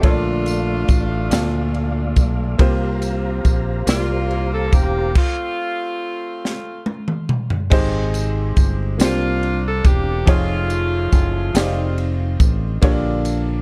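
A punchy, up-front fusion drum kit with dark cymbals and a high-tuned snare anchors this hopeful, uplifting slow gospel fragment in 6/8, joined by a growly fingered electric bass and a clear baby grand piano whose action noise gives it an intimate feel. A tight, bright saxophone section carries the melody with tape echo, while a soft, flute-like tonewheel organ with fast rotary speaker and chorus vibrato holds chords in the background until 5.1 seconds and a jingly tambourine joins at 0.5 seconds. After a stop at 5.2 seconds, a drum fill leads into a repeat of the opening section over rich extended chords, all in a dark, dry production.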